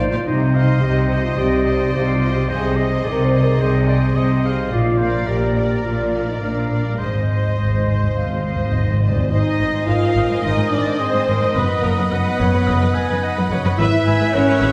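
Triumphant and heroic, this cinematic adventure-score excerpt moves at 107 BPM in Ab lydian, with a lush, distant violin section carrying the melody over clear oboe, pure flute section, warm clarinet and a clear background violin section on second lines, background violas in accompaniment, mellow French horn chords, a very quiet ringing harp in arpeggios, and a foundation of focused, close cellos and smooth, distant double basses, while round soft-mallet timpani add a fill from 7.0 to 9.3 seconds, all heard from further back in a recital hall's reverb.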